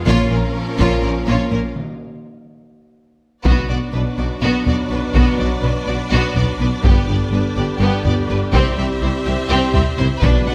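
Cinematic, epic orchestral film score with a heroic yet dark mood, moving at 248 BPM counted in eighths in an uneven 7/8 and cut from a longer piece. From the start, sustained chords from a mellow French horn section, a lush string section and a distant, roomy trombone section sit under a focused violin melody with vibrato, while a second violin line and a smooth, even viola section fill in behind. The low end rests on double basses, a very quiet cello section and a dark, punchy tuba, and a taiko ensemble struck with hard sticks drives the music forward. Round, calf-headed timpani played with soft mallets join only until 2.4 s, then return briefly at 10.2 s. After a Bb minor opening, a break arrives at 1.8 s, with a drum fill from 2.7 s, and the music settles into B minor at 3.5 s, moving on through G and C chords. A moderate recital hall reverb gives the ensemble a sense of space.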